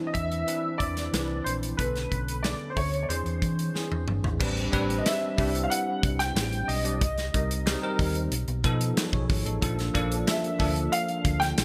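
Bright 1980s-style digital production with light reverb frames this slick, bittersweet jazz-funk pop fragment, where a bell-like tine electric piano comps under a worn, long-sustaining baby grand melody (both touched by ensemble chorus), a dark, round hollow-body bass punches below, and an up-front small-room drum kit with crash, hi-hat, kick, snare and toms fires off a fill from 3.7 to 4.4 seconds as lush chords like Cmaj9, Am11 and B7#11 drift toward Bbmaj7.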